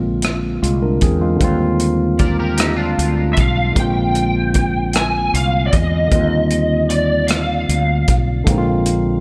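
A barky tine electric piano, lightly overdriven through a combo amp, opens this slow six-eight R&B passage in Eb major alongside a round, dark fretless bass. The tempo sits at 51 BPM, and the mood is sensual and tender, with the harmony rocking between Bb9 and Ebmaj13. A soul drum kit follows almost at once, its tight kick, hi-hat and rim click sounding natural and up front, with gated reverb on the kit. At 2.2 seconds a twangy, picked electric guitar on the edge of break-up adds a brief second line, coloured by analog chorus and digital delay. The lead guitar takes the melody from 3.3 seconds, picked through a small cranked amp for a lo-fi, overdriven tone, with ensemble chorus and delay. Light reverb and small-room ambience frame a bright 1980s-style digital production in this fragment of a longer piece.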